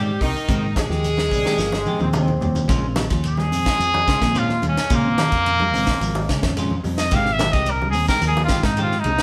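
A tight funk drum kit with a high-tuned snare drives this hypnotic afrobeat excerpt at 108 BPM in Bb dorian, with a round fingered bass, ringing congas, a grainy shekere in the background, twangy picked guitar stabs, dark fingered guitar arpeggios and a reedy, slightly out-of-tune electric piano with fast tremolo underneath. A punchy horn section carries the opening melody over an edgy tenor saxophone and a clear trombone section, and a drum fill from 1.6 s leads into a trumpet solo from 2.7 s. The trumpet sits up front with scooped notes, reaching up to F5 over the Bbm7 and Abmaj7 chords, and the whole band plays live together in one room with a wet reverb.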